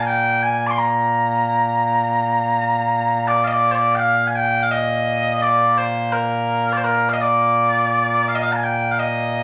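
Ceremonial and proud, this short cut from a longer piece of traditional Scottish pipe music in Bb mixolydian moves at 84 BPM in a straight 3/4, with a solo set of mellow small bagpipes playing up front in a sweet, continuous tone with vibrato, opening with a phrase that is repeated from 3.3 seconds, all set in a wet, large studio reverb.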